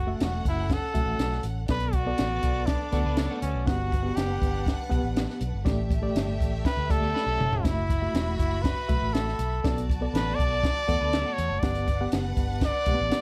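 Dry, with little reverb, this short cut from a longer uptempo 1960s-style soul piece feels uplifting and joyful in a straight 4/4. A present, up-front trumpet with jazz-style vibrato carries the melody as a solo across the whole 13.2 seconds, while a rich, focused chamber violin section plays a bowed second line behind it, touched with slapback echo. Underneath, a vintage muted fingered electric bass sounds dark and round, and a reedy, worn, slightly out-of-tune electric piano fills in the harmony with fast tremolo through its built-in speakers. A compact cocktail kit with a high-tuned snare, punchy kick and rolled-off top keeps time, adding a fill between 7.1 and 7.6 seconds. In the background, an electric guitar at the edge of break-up, picked and given analog chorus, drops in with short riffs first at 2.9 seconds, over a cycle that moves through F#m7, Bm7, Gmaj7 and A7sus4.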